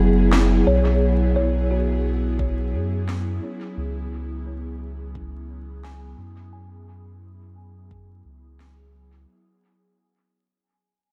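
An airy, breathy chorused pad and a round, deep sub bass open this meditative, spacious ambient dub fragment over a swung groove, joined at 0.3 seconds by a tape-warm snare with dub echo and at 0.7 seconds by low-pass-filtered kalimba arpeggios drifting through diffuse delay, while a deep kick sits in the background from 2.4 seconds, all under a haze of vinyl crackle and light reverb as the harmony moves from F#5 to C#m7 and the whole piece fades out.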